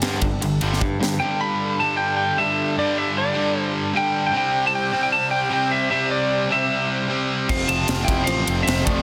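A dense, heavily limited modern master with light reverb frames this heavy, driving hard rock fragment, cut from a longer piece and moving at 153 BPM in a straight 4/4. Up front, a cranked stack guitar plays a bright, overdriven picked riff throughout. A lightly driven lead guitar carries the melody above it, its slightly broken-up, compressed tone trailed by tape echo, while a lush, thick unison pad with chorus sustains detuned sawtooth and square-wave chords in the background. The opening bars bring in the full band: a tight metal drum kit with a high-tuned snare, bright cymbals and an airy big-room sound, a growly, punchy picked bass, and a second overdriven guitar playing a riff in the background. A drum fill leads the kit, bass and second guitar to drop out at 1.2 seconds, leaving the stack guitar, lead and pad to carry the passage. The rhythm section returns at 7.5 seconds, joined by an octave-fuzz lead guitar playing a distorted second line in the background as the harmony arrives on F.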